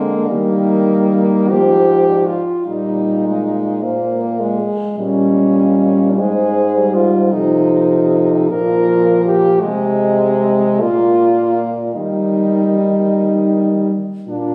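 Classical horn quartet writing in a lyrical, serene mood, this passage from a longer work moves in 6/8 with uneven, rubato beats. A light-vibrato melody horn sits in the background while a clear, smooth-topped second horn stands up front; two mellow parts share the texture, as the distant, roomy accompaniment horn drops out at 13.9 s just before the others finish. A warm bass horn anchors the low end. The whole is heard through a moderate scoring-stage reverb, captured on a phone in the room.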